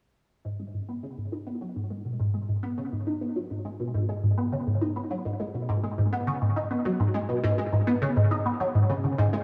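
A squelchy, resonant blip pluck fades in from 0.4 s to 9.4 s, playing a bright, up-front riff between G#2 and D#4 through phaser, ensemble chorus and analog delay, setting an expansive, cosmic ambient mood in G# minor at a straight 103 BPM in 4/4, tuned to A4 = 439 Hz, with moderate plate reverb and small room ambience around it in this fragment cut from a longer piece.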